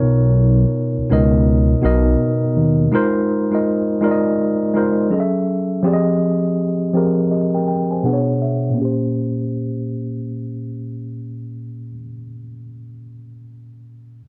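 R&B at 82 BPM in Bb dorian, this excerpt carries a smooth, late-night mood with a swung sixteenth-note feel in 4/4. A tine electric piano holds the accompaniment across the whole 14.2 seconds, its worn, slightly out-of-tune tone sounding clean, direct and up front through a low-pass filter that sweeps over the opening 8.8 seconds. A smooth synth bass built from detuned sawtooth and square waves sits underneath only until 2.9 seconds, dark and sustained with a fast attack and vibrato. The harmony moves through extended chords, from Bmaj9 and Ab6 to Gbm9 and Fm9, with the electric piano adding a fill just before the second section arrives at 8.8 seconds on Bbm69. The sound is dry and close, in the manner of a 1970s studio recording.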